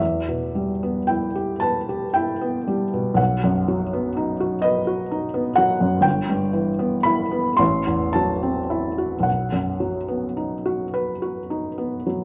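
Yearning and wistful, this romantic classical nocturne in E minor drifts in a rubato 6/8 at 35-43 BPM, a solo felt-muted upright piano sounding soft, mellow and intimate up front, with audible action noise and short sustain, ranging from G1 to C6 over a chord path from Em through B, Em/G and F#m7b5/A back to B, all set in a moderate recital hall reverb with a dark, warm production in a 12.2-second cut from a longer piece.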